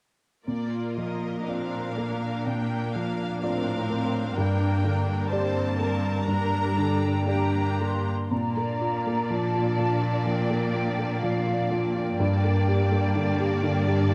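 Opening at 0.5 s, an up-front grand piano with long sustain rings over lush bowed strings in a slow, rubato Bb major film-score passage at 61 BPM that feels hopeful and moving. A smooth violin section carries a second line above a rich viola section, while a clear, focused cello section holds the bass, all with vibrato, over alternating Bb and Gm chords. At 6.8 s an airy flute ensemble enters from a distance with a soft attack, and at 8.3 s a dark, expressive violin section takes the melody on D5, all set in a moderate scoring-stage reverb in this section cut from a longer piece.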